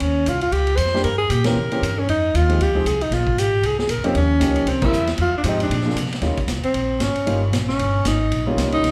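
Swung eighths in 4/4 drive this playful small-group swing and bop cut, where a woody, thumpy pizzicato upright bass and a vintage drum kit with dark cymbals and a punchy kick carry the pulse, an intimate grand piano with audible action noise accompanies a clear, vibrato-laden alto saxophone melody that stops at 6.1 seconds after two band accents, and a close-miked, warm tenor saxophone solo enters at 6.6 seconds, the group heard through a wet large-studio reverb from further back in the room.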